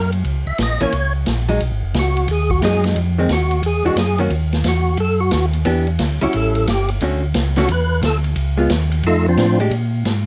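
Greasy and soulful, this soul jazz organ trio excerpt swings at 177 BPM in 4/4, carrying a 64% swing on the eighth notes through a single section that runs roughly ten seconds. A fat, lightly overdriven tonewheel organ takes the melody as a solo from the start, its percussive third-harmonic attack and key click colored by chorus vibrato and a slow rotary speaker, sitting up front between F3 and E5. Beneath it, a second tonewheel organ handles the bass line in a mellow, round, dark voice, also lightly overdriven with the same slow rotary and chorus vibrato, ranging from F#1 to Bb2 and continuing until about 10.3 seconds. A clean, compressed hollow-body electric guitar enters at 0.8 seconds with picked accompaniment, up front and warm, while a distant, roomy acoustic drum kit with a punchy kick, medium-tuned snare, hi-hat and ride cymbal swings along with a rolled-off top. The harmony moves restlessly through chords such as B6, Fm7, E9, Em7, A7, Dmaj7 and F13, all captured dry with little reverb.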